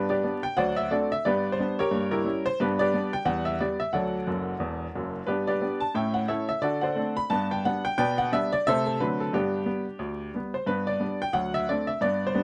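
Stride piano jazz at a brisk 178 BPM in G major, exuberant and playful, carried by a solo upright piano that is bright, woody and slightly detuned, with audible action noise and an intimate, up-front presence captured by close, detailed microphones under light reverb and vinyl crackle, swinging through chords such as G, D7 and Gdim7 with a fill at 4.3 seconds in this short cut from a longer piece.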